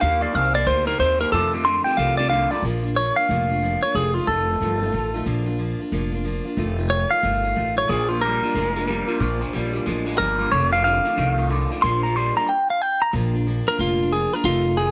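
A twangy, compressed clean electric guitar carries the melody up front with tape echo and takes a solo from 13.1 s in this rowdy, upbeat, swung rockabilly piece cut from a longer one, backed by a thumpy, woody upright bass, a full-bodied picked steel-string acoustic guitar, and a slightly broken-up, lo-fi electric guitar riff with phaser that plays until 2.6 s and returns at 7.9 s, set in light studio reverb.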